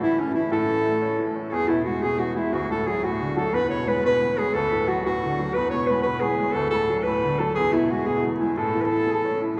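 Celtic folk in A major at 119 BPM in a cheerful, rollicking 6/8, this roughly 9.6-second fragment of a longer piece sets a warm, close-miked classical clarinet up front on the melody, a pure wooden flute with vibrato and a crisp attack above it on a second line, and a bright, woody, polished upright piano accompanying over a chord cycle that moves between A, E and D, all bathed in the long, wet reverb of a cathedral-like hall.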